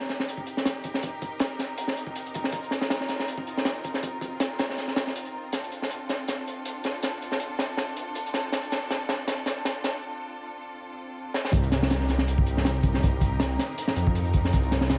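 Vinyl crackle hangs over a small-room sound with light reverb, giving this atmospheric, raw drum and bass cut from a longer jungle piece a dusty, lived-in surface. Up front, a crunchy breakbeat kit plays with a slight swing, its saturated, gritty hits carrying a tight kick and a high-tuned snare under a rolled-off top. Behind it, a distant bowed string ensemble holds rich, vibrato-laden sustained chords, moving from Cm7 to Dm7 as the build-up gathers. A drum fill runs from 5.5 to 10.0 seconds, followed by a brief break. At 11.5 seconds the drop arrives, the strings return to Cm7, and a thick, menacing detuned saw bass enters with a beating, sustained tone that sits up front beside the drums.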